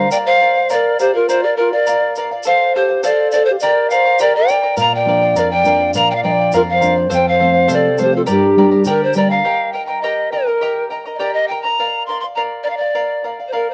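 A dry, close recording with a 1970s studio character and a touch of small-room reverb frames this wistful, earthy Andean folk piece in 2/4 at 103 BPM, cut from a longer performance and moving through Bb, F and G minor before turning to Eb. A breathy, reedy bamboo pan flute carries the tongued, vibrato-laden melody up front, shadowed by a mellow, airy large quena in straight tone until 9.1 seconds, while a bright charango shimmers with fingerpicked double strings throughout. A dark, fingerpicked nylon-string guitar sounds briefly at the very start and returns from 4.8 to 9.4 seconds, and a grainy tube shaker plays through the opening section.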